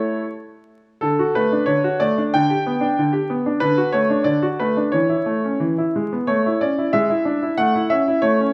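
Cheerful and graceful, this short excerpt from a classical-period piano sonatina moves at 91 BPM in 2/4 with a flexible, rubato feel, settling into A major from 3.6 s. A solo grand piano carries the whole passage, its tone brilliant and smooth with a vintage character and long sustain, placed up front and spanning D3 to G5. The opening phrase wanders through D, G over D and D6 before arriving on A over E and E, and a second section begins at 6.3 s, turning from A to E7 over G# and back to A by 7.6 s. A wet recital hall reverb gives the notes a lingering bloom, while a vinyl crackle adds an aged patina. The fragment ends at 8.5 s.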